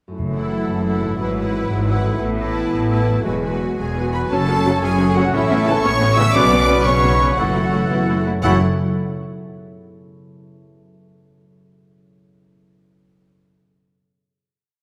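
Ringing harp arpeggios open this swashbuckling, determined heroic adventure film cue in 6/8 at 117 BPM in F# minor, where trombones sustain chords over a lush cello and double bass foundation, soft-mallet timpani add round single strokes, expressive violins carry the vibrato-rich melody with a clear second violin line and smooth violas behind them, and at 3.8 s a pure, crisp flute and mellow trumpets join before a dark clarinet, an oboe and very quiet French horn chords fill out the theme, all in a wet scoring-stage reverb, with the harp ringing on alone until 9.5 s.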